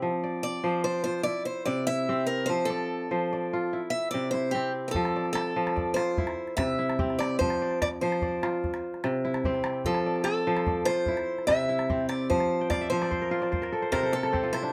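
Light reverb frames this hypnotic, joyful excerpt of West African string and xylophone music in F major, where a ringing, crisp kora arpeggiates from the first second over alternating F and C chords at 98 BPM in a straight 12/8, a bright, picked archtop guitar carries an up-front solo melody from 0.4 s, a small, saturated calabash joins at 4.9 s, and the kora adds a fill from 12.6 s.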